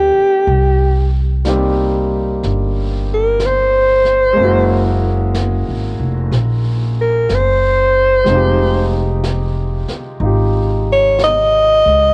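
A slow swung 4/4 at 62 BPM sets the pace for this smoky, intimate jazz ballad in F minor, a short excerpt cut from a longer piece. A breathy alto saxophone carries the melody as a solo throughout, close-miked and up front, with vibrato and a soft subtone, its sound colored by cassette tape. Beneath it, a baby grand piano accompanies with a warm, long-sustaining tone, also carrying that tape character, while a woody, thumpy upright bass with gut strings plays pizzicato up front, forming the foundation. A jazz kit played with brushes enters at 0.5 seconds, sitting far back with brushed snare and hi-hat. The harmony moves from Cm7 to Gb9 at 4.4 seconds and settles on Fm9 at 8.3 seconds, all within light reverb and the close ambience of a small room captured as a home recording on cassette.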